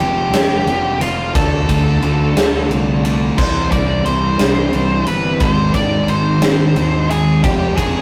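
Cathartic and restless, this short cut from a longer piece of quiet-loud alternative rock moves in a slow, swaying 6/8 over a brooding progression that passes from F minor through D minor, C and A-flat before returning to F minor. A distorted fuzz lead guitar carries the melody high above, dark and picked, while a thick fuzz guitar grinds out a low riff in the background beneath it. A second thick fuzz guitar plays its own riff very quietly, and an overdriven fingered bass adds a round, growling floor. A very quiet string machine voiced as cellos holds sustained chords with a soft attack, long release and vintage ensemble-chorus shimmer. The huge arena drum kit enters at 0.3 seconds, up front with a punchy kick, fat snare and bright crash and ride cymbals, all set in a rough rehearsal-room sound with light reverb and saturated grit.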